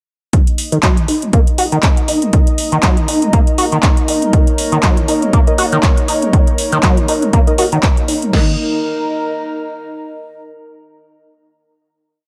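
Set in light reverb and a digital ambience, this gritty, trippy acid house piece is driven by a punchy, up-front analog drum machine with a four-on-the-floor kick, snare and crash, alongside a second machine in a larger room adding metallic hi-hats and handclaps on the backbeat. A rubbery, resonant sawtooth acid bass plays a dark, saturated line with accents and slides, pumping against the kick under a smooth, detuned analog pad of sustained chords. A lo-fi, nostalgic tape-like pad with slowly shifting chords drifts in at 1.6 s, and nasal, 12-bit chord stabs add syncopated hits in the background from 5.1 s, before the groove gives way at 8.3 s to a final chord.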